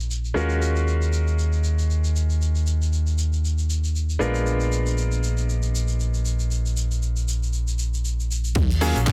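A bright baby grand piano, pumping with sidechain and trailing delay, plays accompaniment over an overdriven, amped fingered electric bass held up front, while a dry, damped 70s drum kit adds low-pass-filtered hi-hat, shaker, handclaps and crash cymbal with a light swing. This sensual, sleek nu-disco passage from a longer piece moves from a minor eleventh chord to a dominant chord and back in a small room ambience. A punchy, tape-warm electronic kick enters up front at 8.6 seconds.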